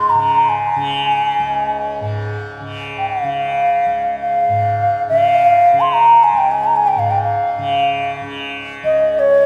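Bathed in a lush church reverb, this short, serene and radiant Hindustani classical passage in free time sets an airy, hollow bamboo bansuri up front, its crisp attack and vibrato singing the melody, over the bright, buzzing shimmer of a softly plucked tanpura drone.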